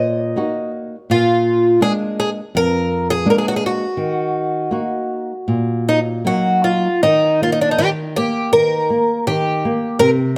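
A passionate, mournful fado-style ballad in a loose, rubato 4/4, this short excerpt sets a picked twelve-string acoustic guitar carrying the melody up front, its dark, boxy tone shimmering with octave-doubled strings that sound old and woody. Beneath it, a fingerpicked flamenco guitar, also close and up front, supplies the accompaniment with audible finger squeak. Close, detailed microphones and light reverb frame the pair as the harmony turns from minor to major at 7.0 seconds.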